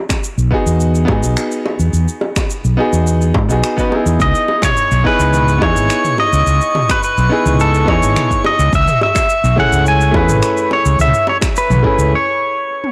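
A pedal steel guitar carries the melody up front from 4.2 seconds, clean and compressed, played with fingerpicks, slide and volume swells, with delay trailing its lines in this wistful, relaxed sunset chillout excerpt at 106 BPM in C# minor. Beneath it, a round, dark fretless electric bass and a clear, vintage grand piano with short sustain and delay move through Emaj7, C#m7 and Amaj9, while a layered deep house kit of finger snaps, shaker, toms and a softly clipped snare plays alongside a deep electronic kick and tight, high-tuned bongos. From 4.8 seconds a glassy, drifting harmonics texture hovers in the background with chorus and reverb, all under light room reverb and a blown-out, overdriven sound, before a brief break at 12.1 seconds.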